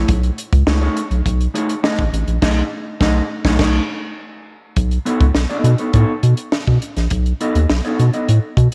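Light reverb and a small-room ambience frame this driving, cool funk fragment, where a mellow, clean electric guitar plays accompaniment over B13 and then B9 from 4.8 seconds, a round, deep analog bass with a wave-folded edge holds down the low end, and a dry, compact cocktail drum kit of punchy kick, high-tuned snare, hi-hat and dark crash cymbal drives it along, the band landing accents between 2.4 and 4.8 seconds.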